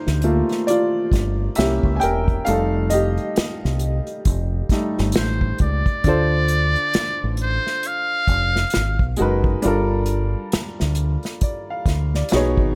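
Lightly reverberant with a studio ambience, this smooth neo-soul R&B excerpt at 67 BPM in a swung 4/4 sets a clear, boxy baby grand piano over a dark, round fingered electric bass and an airy acoustic kit with a punchy kick and bundle sticks, while a buzzy, thin trumpet with a metal mute plays a jazz-style melody from 5.2 to 9.2 seconds with light vibrato and scooped notes.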